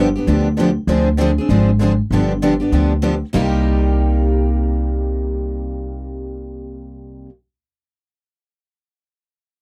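A dry, close 1970s-style studio sound frames this fiery, virtuosic snippet of jazz manouche in C minor at 196 BPM with a swung 4/4 feel, where a woody, thumpy pizzicato upright bass on gut strings sits up front beneath two bright, freshly strung picked steel-string acoustic guitars (a full-bodied dreadnought up front and a boxier parlour guitar), both showing finger squeak as they comp through G7, Dm7b5 and G7 before settling on Cm7 at 3.3 seconds.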